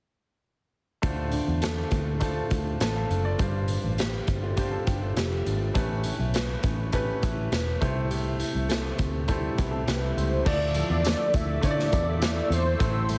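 Gritty, up-front garage drums and a dark, round muted bass anchor this lonely, hazy indie bedroom-pop excerpt, joined by a brilliant, woody upright piano, a fingerpicked nylon-string guitar warbling through lush chorus, and brief, slightly broken-up electric guitar phrases with tape echo from 4.4 seconds, while a velvety sawtooth synth lead carries the melody from 9.9 seconds and a hollow, flute-like pad and jingly tambourine arrive at 10.5 seconds, the mix squeezed into a heavily compressed, radio-like sound in a small room.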